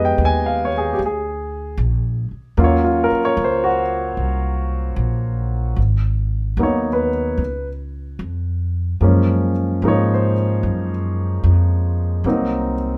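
Jazz ballad at 75 BPM with a gentle swing, melancholic and smoky, as an intimate concert grand piano with deep bass, long sustain and audible action noise voices rich chords from Fm7b5 through Ebm9 and Gbmaj9 over a woody pizzicato upright bass, both up front in a moderate large studio reverb for the full 13 seconds.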